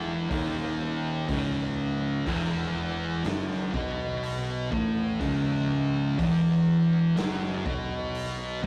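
A straight 4/4 pulse drives this hypnotic, heavy stoner and doom metal fragment, where two thick, dark fuzz guitars play a picked, distorted riff up front, a growly, overdriven fingered bass sits in the background, and a gritty, saturated garage drum kit with a punchy kick, medium-tuned snare and hi-hat joins at 0.3 s, the whole take caught in a rough rehearsal-room sound with tube saturation and moderate reverb.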